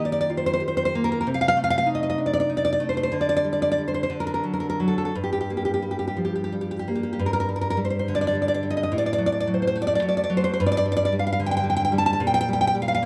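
A fingerpicked nylon-string guitar, warm and deep with audible finger squeaks and placed up front in light reverb, plays a passionate, wistful romantic solo in G minor at a rubato 57-75 BPM in 6/8, moving through a first section over Eb, Adim/C, D and Gm chords before a second section from 7.2 s that rocks between G5 and Am6 and settles on Gm/Bb in this short excerpt from a longer piece.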